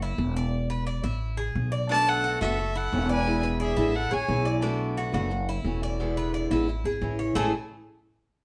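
A straight 4/4 pulse at 176 BPM drives this sunny, relaxed latin excerpt in A major, where a metallic Cuban tres spins arpeggios over a woody, thumpy pizzicato upright bass placed up front from the start, a dark, boxy picked ladder-braced acoustic guitar joins the accompaniment at 1.9 s, and between 1.9 and 4.5 s an earthy bowed violin carries the melody with light vibrato while a punchy, close-miked solo trumpet adds a second line, the ensemble sitting in moderate studio reverb as if heard from further back in the room.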